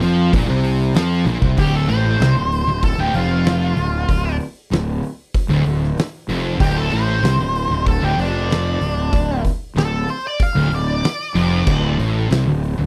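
Heavy and sludgy, this short stoner and doom metal excerpt moves at a straight 95 BPM in D minor, with an oversized low-tuned drum kit and a growly, bright fingered fuzz bass up front, while a double-tracked overdriven guitar and two thick fuzz guitars, one dark and one very quiet, grind out the riff behind them before a drum fill at 1.3 seconds shifts the harmony from Bb5 to Dm and launches an octave-fuzz lead guitar solo, soaked in wah and slapback echo, from 1.6 seconds, all captured in a dry, close 1970s-style studio sound with a fat snare and boomy kick.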